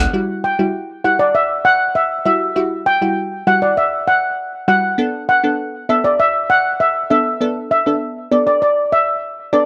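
A steel pan carries the melody from 0.4 seconds, its dark, shimmering metallic tone struck with soft rubber sticks and trailed by tape echo, sitting up front in the upper register. This short dancehall excerpt moves at a straight 99 BPM in 4/4, with a tough yet sultry mood. Underneath, a wavetable chord stab supplies the accompaniment from the very start. Its crisp, detuned unison voice has a warbling vintage digital character, shaped by a filter pluck and a moving notch, with a fast attack and short decay. The harmony rests on Emadd9 before shifting to Bm7 at 5.0 seconds. The sound is dry and gritty, as if captured on hardware, with only a light touch of reverb around the two parts.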